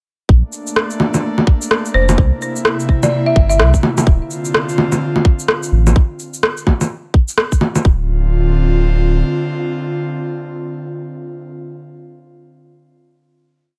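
Wistful and ghostly, this short future garage piece moves at 127 BPM in D minor, with a swung sixteenth-note feel in 4/4. An airy, breathy pad holds sustained chords through the whole track, its detuned, chorused tone pulsing under sidechain pumping, while a round sine sub bass carries a dub-style line up front and pumps along with it. A tight, muffled two-step kick sits forward in the mix, joined by a skittering, shuffled layer of shaker, rim click and bongos with a tape-softened, small-room character. Around 1.9 seconds a woody marimba played with medium hard mallets slips in short, rustic answering phrases, touched with delay, before falling away. The groove drops out at 7.8 seconds, leaving the pad, with the sub bass lingering briefly beneath it, to hang on a closing Dm7 within a digital ambience until the end.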